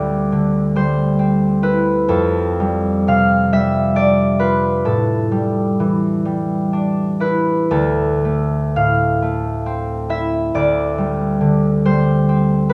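Set in a moderate recital-hall reverb, this brief, wistful and mysterious classical passage, cut from a longer piece, features a solo concert harp, bright, ringing and up front, fingerpicked from D2 to F5 in D dorian at a slow, rubato 43 BPM in 6/8 with uneven beats, moving through Cadd9/D, F69, A7sus4 and Dm9 before settling back on Cadd9/D at 10.6 seconds.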